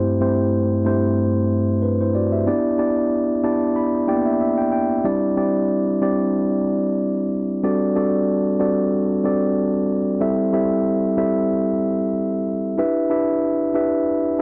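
A gently swung 16th-note pulse at 93 BPM in 4/4 carries this nostalgic, glossy pop excerpt in G major, played by a single mellow tine electric piano that sits clean and up front across a span from G2 to B5. The chords move from Am7/G to G6, Cadd9/G and D7/G before returning to Am7/G and G6, with the piano adding short fills around 3.1 seconds and again at 14.1 seconds. A light reverb touches the piano within a dry, close 1970s-style studio sound.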